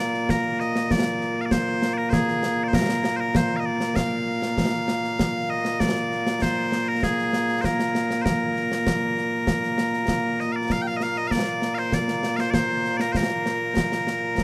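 A lightly reverberant recording cut from a longer piece of ceremonial, stirring Scottish pipe music at 98 BPM in straight 4/4 and Bb mixolydian, with loud, bright, piercing, continuous bagpipes up front carrying the melody from Bb2 to G5 throughout, while close, dry concert snare and bass drum with dark cymbals join at 0.1 seconds, and the tune moves into a new section at 10.7 seconds.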